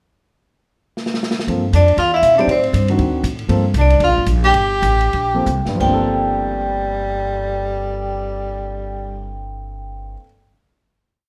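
A drum fill at 1.0 s opens this short, cool, late-night small-group swing and bop piece in G minor at 166-238 BPM. From 1.5 s a woody, thumpy upright bass walks up front beneath mellow drop-2 piano comping. A breathy subtone tenor saxophone enters at 1.7 s, playing in unison doubling, and a ringing vibraphone with slow motor vibrato joins at 1.8 s, carrying a motif-based melody. Meanwhile the dark-cymbaled kit keeps a ride pattern as the tempo slows before a final chord at 5.8 s, all set in a large studio reverb.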